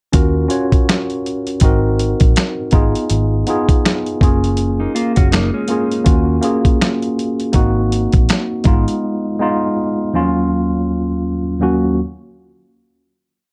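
Nostalgic and melancholic, this lo-fi hip hop piece at 81 BPM in Eb minor rides a laid-back, swung beat from a gritty, compressed sampler-style drum kit with a thumpy kick, snap-layered snare and sixteenth-note hi-hats, beneath a worn, slightly out-of-tune tine electric piano that loops rootless push chords with grace notes through cassette tape, a low-pass filter and plate reverb, while a round, dark muted electric bass plays a sparse line, a mellow clean electric guitar slips in short fills in fourths with spring reverb and tape echo from 4.8 to 6.0 seconds, and once the drums stop at 9.0 seconds the electric piano carries on alone to the close.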